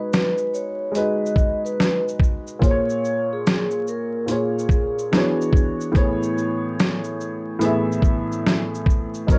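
Reflective and nostalgic, this lo-fi hip hop passage, cut from a longer piece, moves at 72 BPM in 4/4 with a lazy swing on the sixteenths. A mellow vibraphone played with soft mallets carries the melody between G#4 and D#5, its metallic, ringing tone shimmering with a slow motor vibrato until it drops out at 5.9 seconds. Underneath, an upright piano with a woody tone and long sustain sits up front, spanning A2 to E5 and carrying a cassette-tape character through to the end. The sampler-style drum kit is the loudest part, gritty, compressed and overdriven, with a thumpy kick, a medium-tuned snare, hi-hat and shaker, sounding re-recorded in a small room. The harmony drifts from G#m7 to A#m7, then E13 and Amaj9, all wrapped in light reverb, vinyl crackle and a dark, warm production.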